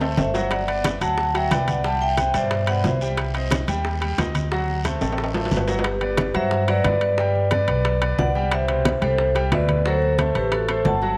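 Set in light reverb and small room ambience, this festive, sunny salsa clip puts a woody, thumpy pizzicato upright bass up front beneath a brilliant concert grand piano with long sustain, very quiet tight bongos, hard-hand congas and ringing metal-shell timbales with brief drum fills, plus a raspy guiro that drops out at 5.8 s, while a metallic vibraphone with medium hard mallets and its motor off carries the melody, pausing between 3.1 and 5.5 s.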